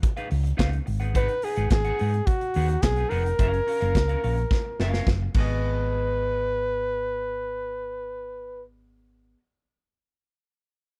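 Disco at 107 BPM in G# dorian, glamorous and sultry, built on C#9, G#m7 and F#maj7 chords: a punchy, close-miked flugelhorn with vibrato sings the melody up front from 1.2 s, over a dark, round hollow-body fingered bass, a clean, picked electric guitar with spring reverb, and a studio drum kit with bright cymbals, a tight kick and handclaps whose fill runs from 4.5 s before the drums stop at 5.5 s, all in a dry mix cut from a longer piece.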